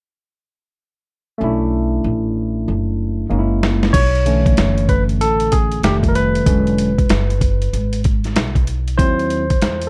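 Mellow and smoky, this jazz-hop cut from a longer hip hop piece moves at 95 BPM in B dorian with a swung 16th-note feel, and its dark production sits in light reverb. A barky, lightly overdriven tine electric piano and a woody pizzicato upright bass enter together at 1.4 s over Bm11 and F#7 chords. A compressed, gritty sampler-style drum kit with a thumpy kick, crash and hi-hat arrives at 3.6 s, and from 3.9 s the electric piano takes a solo over Bm11, F9, E13 and a rootless G#7b13/D#.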